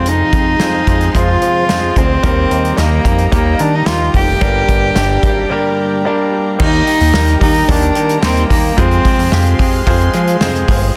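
A dense, heavily limited modern master with small-room ambience carries this dramatic, driving piano-led pop excerpt in straight 4/4, moving through Fm, Eb and Gm. An earthy, boxy bowed cello with light vibrato sings the melody up front until 9.6 seconds over a clear, polished baby grand piano, a glossy, nasal chorused synth bass with a filter pluck, and an acoustic drum kit with a punchy kick and a medium-tuned snare. Meanwhile, a smooth symphonic string section holds sustained chords and a clean, direct electric guitar picks a compressed riff in the background, with a break at 5.5 seconds before a new section begins at 6.6 seconds.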